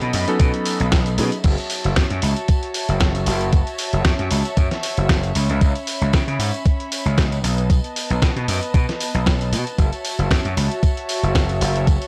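Cosmic and sensual, this nu-disco excerpt rides a swung 115 BPM groove in F# dorian, opening on a drop where a clangy, vintage electric grand piano plays briefly with tape echo and sidechain pumping before stopping at 1.3 seconds, as chords move from B7 into F#m7, C#m7 and back. An up-front, thumpy electronic kick and a punchy, overdriven slap bass drive the track alongside a compressed, dusty sampler-style kit of crash, hi-hat and medium-tuned snare, with tambourine, maracas and group handclaps sitting in the background. Dark, floating bowed strings sustain soft-attack chords with their own pumping, all captured in a dry small room with gritty cassette and transformer saturation.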